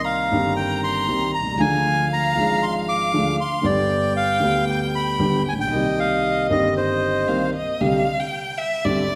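Tango in a sultry, passionate rubato feel, cut from a longer piece, with a reedy, up-front bandoneon carrying the melody over a dark, mellow concert grand piano whose deep bass and audible action noise give an intimate, vintage tone, while a single distant, bowed violin with focused vibrato plays a second line and takes a brief solo at 7.8 s, all set in a wet scoring-stage reverb.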